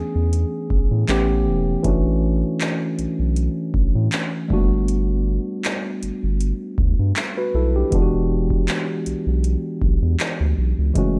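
Set in a digital ambience with every part up front, this short, dreamy contemporary R&B clip from a longer piece moves at 79 BPM in 4/4 with a lightly swung sixteenth feel. A worn, slightly out-of-tune tine electric piano, clean but heard through its built-in speakers, carries the romantic chords Amaj7, A7, Dmaj7/A, Gmaj7 and E7 over a thick, saturated triangle sub bass with a fast attack and long sustain. At 0.3 seconds a booming analog drum machine enters with a deep kick, metallic hi-hats and handclaps, its tape-tinged sound re-recorded in a large room.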